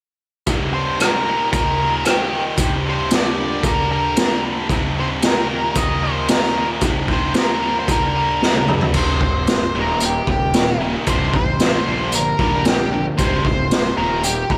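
A big arena sound with a lush hall reverb over small-room ambience frames this gritty, driving classic rock passage in C minor at 113 BPM, cut from a longer piece and cycling through C minor, E-flat and G minor chords. Up front, a raw garage drum kit with a punchy kick, medium-tuned snare and saturated, rolled-off top drives a bright, double-tracked distorted guitar riff with slapback echo, while a dark octave-fuzz lead guitar carries the melody from 0.7 s and a full-bodied steel-string acoustic guitar sits very quietly underneath. After a drum fill, a warm fuzz bass enters in the background at 8.9 s.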